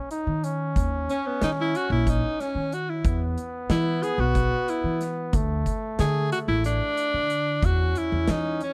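This driving, intricate progressive instrumental fragment of a longer piece moves in a straight 7/8 at 184 BPM in eighths, with a punchy acoustic rock kit of hi-hat, kick and medium-tuned snare under an up-front, woody pizzicato upright bass on steel strings. A clear tenor saxophone with light vibrato and a smooth top enters at 1.1 s to carry the pop-style solo melody, while a warm, classical-style flugelhorn plays a second line alongside it. The harmony shifts through D#5, E5 and D5 before landing on C#madd9/E at 7.6 s, all in a dark, dry production.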